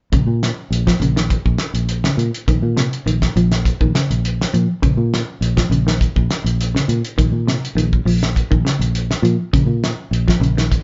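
A cloth-damped, thuddy drum kit with a fat snare, tight kick and a gritty, saturated small-room tone sits up front beside a dark, round, foam-muted fingered electric bass, while a clean, fingered semi-hollow electric guitar plays arpeggios over a single Bb minor chord in this hypnotic, intense afrobeat fragment at 102 BPM, played live in one room with light reverb and the highest frequencies cut away.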